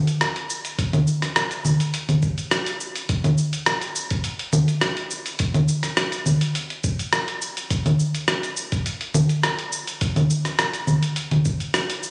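Mystical and warm, this downtempo excerpt in a straight 4/4 pairs a gritty, overdriven dusty soul sampler-style drum kit of congas, hi-hat, rim click and shaker, entering at 0.1 seconds, with a thumpy, compressed electronic kick joining at 0.8 seconds, both up front in a small room yet bathed in a lush hall reverb and a dull, phone-in-the-room sound, with a brief break from 2.5 to 3.1 seconds.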